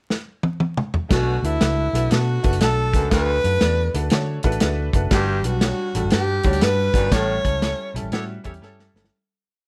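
Vinyl crackle and light reverb frame this warm, joyful uptempo 1960s-style soul piece at 120 BPM in a swung 4/4, where a dry, up-front drum kit with a tight kick opens alone with a fill at 0.1 seconds before the driving beat lands on the snare across all four beats. From 1.1 seconds a breathy, intimate tenor saxophone carries hook-like phrases over a round, foam-muted electric bass line with slides, a woody, slightly detuned upright piano chopping eighth-note chords with a short fill, and a gritty, roomy baritone saxophone punctuating low. The harmony moves through Bm7, D6 and Gmaj7 to A7, where the band accents, and a clear horn section adds punches at 8.1 seconds as the piece fades out.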